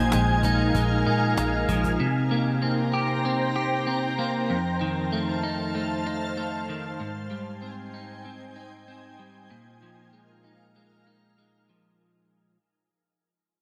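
Melancholic and haunting, this dream pop excerpt at 96 BPM drifts through a huge ambient reverb as a clean, up-front electric guitar picks compressed arpeggios through analog chorus and tape echo, over a shimmering, detuned pad of sustained chords with an ethereal octave-up shimmer. A round, foam-muted electric bass and a snappy, close cajon played with soft hands appear only in the first 2.0 seconds, after which guitar and pad carry the Bb7sus4, Cm7, F7 and Abmaj7 changes while the whole passage fades out over its 12 seconds.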